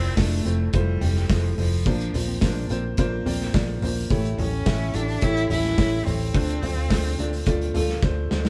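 Piano-driven pop with an uplifting, anthemic mood, this short excerpt moves at 107 BPM in a straight 4/4, cut from a longer piece. A bowed cello carries the melody with vibrato and a nasal, focused tone, while a dark upright piano supplies mellow, woody accompaniment across the chords Fmaj7, Bbadd9, A7 and Dm7. A fingerpicked steel-string acoustic guitar plays a full-bodied jumbo riff tucked in the background, and a vintage electric bass, foam-muted and round, holds the low end with an amped, shadowy character. A loose indie drum kit sits up front from 0.2 s, with a punchy kick, medium-tuned snare, hi-hat and toms, its top rolled off and its studio room pumping, closing on a drum fill at 8.0 s. The band sounds like it is playing live together in one stone room, with a moderate reverb of about 1.2 s binding the parts.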